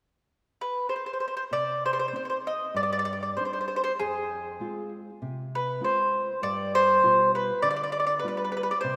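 An Italian folk serenade, passionate and romantic, moving at a rubato 99 BPM in 4/4 and set in C harmonic minor. A picked mandolin on double strings carries the melody from 0.6 seconds with a round, up-front tone. A small-sounding, thumb-plucked nylon-string guitar enters at 1.5 seconds with warm accompaniment through Cmadd9, Fm and G7. The rough home-demo mix is bathed in a lush hall reverb, and the passage is cut from a longer piece.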